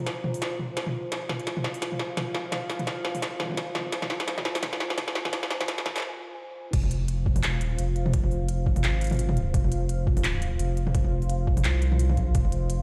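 Cinematic and tense, this excerpt of half-time drum and bass runs at 171 BPM in F minor with a 16th-note swing. A dark analog pad holds sustained chords throughout, its detuned sawtooth tone deep and full-bodied with a slow attack, chorus and sidechain pumping. An industrial drum kit enters almost at once, sitting up front with a clanging snare, crisp hats, handclaps, toms and crash cymbal, all carrying a tape-warm, electronic character. The opening build-up carries a drum fill and a filter sweep before a brief break at 6.0 seconds. The drop lands at 6.7 seconds, where a thick, saturated sine sub bass arrives up front alongside a gritty, thumpy electronic kick drum with overdrive. The sound is dry yet carries the hard reflections of a bare stone room, as if heard through a big sound system with the low end filtered.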